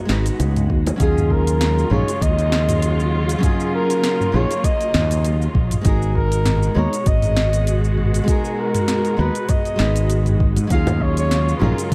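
Over a relaxed 99 BPM groove in 4/4 with a light sixteenth-note swing, this wistful sunset chillout excerpt in Eb minor sets a round, punchy fretless electric bass up front beneath a soft overdriven electronic kick, a smooth R&B drum kit with sharp snare, hi-hat, shaker and toms, and low-tuned bongos in the background at 0.4 s and again at 10.9 s, while a fingerpicked nylon-string guitar with audible finger squeak and a rich bowed string section bathe in shimmer reverb, and a distant, roomy flugelhorn enters at 1.0 s with a vibrato-laden jazz solo through delay over chords moving from Abm7 to Ebm11 and Abm9.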